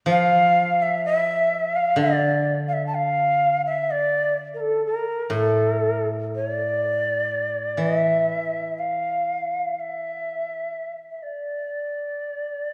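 Calm and austere, this excerpt of Japanese traditional chamber music moves in a rubato 4/4 around 62 BPM, with the end-blown bamboo shakuhachi carrying an airy melody marked by vibrato and a crisp, chiffy attack. Beneath it, the koto supplies a low accompaniment, played with fingerpicks and sounding dry and woody. The music shifts into a new section at 7.8 seconds, and after the koto stops at 10.7 seconds the shakuhachi continues alone until 12.7 seconds, all set in the long reverb of a church or concert hall.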